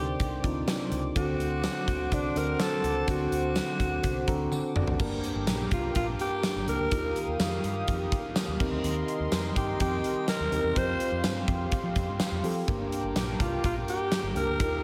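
A growling alto saxophone, raspy and breathy with light vibrato, carries the melody up front through this nostalgic, moody 1980s-style pop excerpt in G minor at 125 BPM. Beneath it a mellow tine electric piano with slapback echo plays accompaniment, while a soft-attack sawtooth analog pad, detuned and treated with chorus, holds sustained chords, and a round, foam-muted fingered electric bass anchors the low end. A gated 80s drum kit sits up front with a fat snare, punchy kick and bright cymbals, joined by a very quiet, jingly tambourine. The electric piano and drums each play a short fill leading into the change at 5.0 seconds, where a dark, double-tracked overdriven electric guitar enters low in the mix. The harmony moves from Cmadd9 and D7 to Gm, Ebadd9, Cm7 and Fsus2 before settling back on Gm, and the recording is set in a big, arena-like recital hall reverb.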